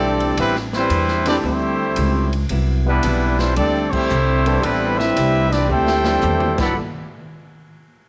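A tight, up-front trumpet section carries the melody in this joyful, brassy big band swing excerpt at 113 BPM in 4/4, its light vibrato riding over a swung eighth-note feel. Beneath it, a punchy trombone section plays a second line, while a woody, thumpy upright bass sits close in the mix with the warm sound of gut strings. A clear baby grand piano adds accompaniment from the background, its action noise audible, and a very quiet, clean hollow-body electric guitar accompanies alongside it. The drum kit, airy and polished with a punchy kick, enters at 0.2 seconds, the band hits an accent at 3.8 seconds, and a drum fill runs from 5.7 to 6.8 seconds. The harmony moves through rich extended chords from Am11 and D9sus4 to a closing Gmaj13, all set in a light small-room reverb.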